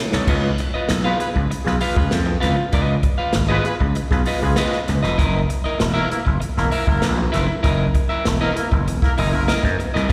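A gritty, growly slap bass with overdrive drives this playful funk excerpt at 98 BPM, joined by a big-band drum kit with a punchy kick and dark cymbals that opens on a fill, an electric guitar at the edge of break-up with slapback echo, and a distant, roomy horn section with light vibrato entering at 1.0 seconds, all heard as a live gig through the venue's sound system over chords moving from Db9 to Gb6.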